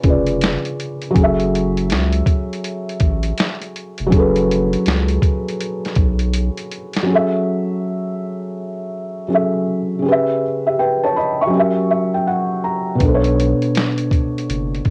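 An 81 BPM groove in 4/4 with a 65% 16th-note swing drives this hazy, melancholic lo-fi hip hop excerpt, built on a gritty, compressed, pitched-down boom bap kit with a thumpy kick, medium-tuned snare and hi-hat, all colored by cassette tape. A soft, felt-muted upright piano with dark, intimate tone and audible action noise carries the jazzy chords from C#7b9 and F#m7 through to Bm9, while a deep, thick, saturated sub bass sustains underneath. After a drum fill at 6.3 seconds, the piano plays alone from 7.1 seconds, adding its own fill before the bass and drums return at 13.0 seconds, all in a moderately reverberant, homemade cassette sound.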